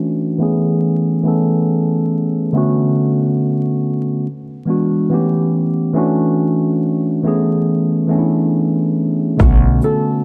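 A relaxed 70 BPM groove in 4/4 with swung sixteenths sets up this nostalgic, melancholic lo-fi hip hop fragment, tuned slightly flat to A4 = 436 Hz. For the first 9.4 seconds a mellow, up-front tine electric piano carries the chords alone, moving from Amaj7 through Bm7, E7, A7 and Dmaj9 under a filter sweep and a cassette-tape haze. At 9.4 seconds a punchy, overdriven dubstep kit of kick, crisp hi-hat and shaker drops in alongside a single thumpy pizzicato upright bass note and a brief, muffled thumb-plucked flamenco guitar line, set in a plate-reverb room with vinyl crackle and a dark, warm production.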